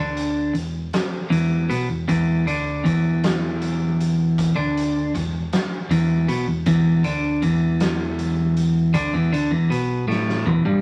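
Mysterious and dark, this short cut from a longer psychedelic rock piece moves at a slow 52 BPM in a straight 6/8. A bright, clean twelve-string electric guitar carries the riff up front, its picked tone twangy and compressed, sitting in a low register from E2 to D3 over an E5 chord. Beneath it, an overdriven picked electric bass stays in the background with a round, punchy, amped sound. A raw garage drum kit enters at 0.2 seconds with hi-hat, kick, snare and toms, giving a fat snare and punchy kick a saturated, gritty character with a rolled-off top in a bright stone room. A drum fill closes the passage from 10.1 seconds, while moderate studio reverb and a layer of vinyl crackle lend the recording an aged, spacious feel.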